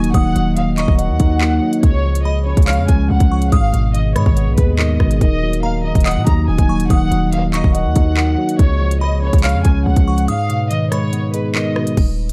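A biting, lightly vibrato studio violin section carries the cold, menacing melody of this half-time drill cut at 142 BPM in Eb minor, over punchy, hard-hitting 808 bass, an up-front drill kit with a hard-clipped kick, crisp hats, claps and rim clicks, a mellow phased tine electric piano, ethereal glass harmonica chords in the background and a delicate, tinkling FM bell with chorus and delay, all in a dark, dry production that breaks at 10.3 seconds.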